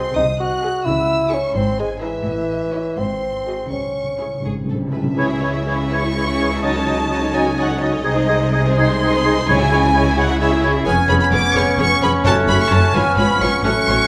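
Drenched in the reverb of a recital hall, this dramatic, urgent classical passage in C# minor moves in a rubato 6/8 at 85 BPM, with a close chamber violin section singing the melody with vibrato and portamento over a lush symphonic violin section, a viola section, a mellow bassoon, a smooth cello section and a rich double bass section, while hard-mallet timpani punctuate from the background with a fill from 3.7 seconds and, at 5.2 seconds, an airy distant flute, a clear clarinet, a cor anglais and a dark French horn section holding sustained chords with a soft attack join in.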